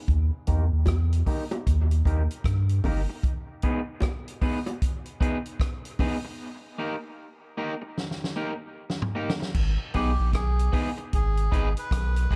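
A deep, round sine sub bass sits up front in this heavy, meditative dub reggae excerpt at 76 BPM in G# harmonic minor, moving over a swung 16th-note feel as the chords shift between D# and G#m. It drops out for a break at 3.2 seconds, leaving an acoustic drum kit with a punchy kick, a rolled-off top, medium-tuned snare, rim clicks, hi-hat, toms and crash to carry the groove alongside tight, high-tuned bongos treated with dub echo. A twangy, picked electric guitar, slightly broken-up, plays accompaniment through high- and low-pass filters and dub echo, while a filter sweep runs across the opening section and a drum fill leads into the next. The bass returns at 9.6 seconds, and a reedy, breathy melodica enters with the melody at 10.0 seconds, filtered and trailed by echo. A small room and a dark, warm production wrap the whole piece.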